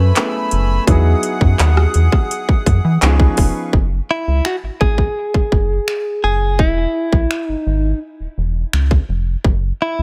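A clean, direct-recorded electric guitar carries the melody from the opening moment, its picked, compressed tone sitting up front and colored by harmonic tremolo and delay, while a warm baby grand piano, a reedy accordion with sweet, lightly detuned sustained chords, and a rubbery square-wave bass sound beneath it. This smooth, dreamy slice of contemporary R&B, cut from a longer piece, moves in a straight 4/4 over chords such as F#m11, Emaj9 and C#7. A trap drum kit enters at 0.2 seconds with finger snaps, handclaps, metallic hi-hats, rim clicks and a hard-clipped kick, its overdriven, electronic sound pushed up front alongside the dark, hollow, bouncy bass with its fast attack and filter pluck. The accordion drops out at 3.7 seconds and the piano just after at 3.8, leaving guitar, bass and drums to carry the second section through F#madd9, E and C# before the harmony falls away. A digital ambience surrounds the whole mix.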